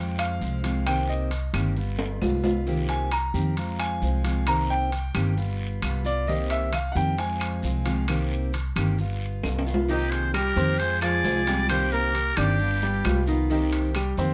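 A lightly reverberant sound frames this nostalgic, sultry passage of Cuban son and guajira, cut from a longer piece and moving at 133 BPM in a straight 4/4 in C minor. A bright grand piano with long sustain takes a solo through its opening 9.9 seconds, its arpeggios circling a repeating Fm, Cm7, G7, Cm7 progression over a fingerpicked jumbo steel-string acoustic guitar with a full-bodied tone. Up front, a growly, thumpy pizzicato upright bass anchors the low end, while ringing metal-shell timbales add a couple of drum fills and woody claves, grainy maracas and a raspy guiro sit quietly in the background. At 9.9 seconds a buzzy, gritty trumpet with a metal mute steps forward with a vintage jazz-style melody full of vibrato and scooped notes, shadowed by a breathy metal flute with a crisp chiff playing a softer second line. Both horns drop out at 13.3 seconds, leaving the rhythm section to carry the groove to the cut.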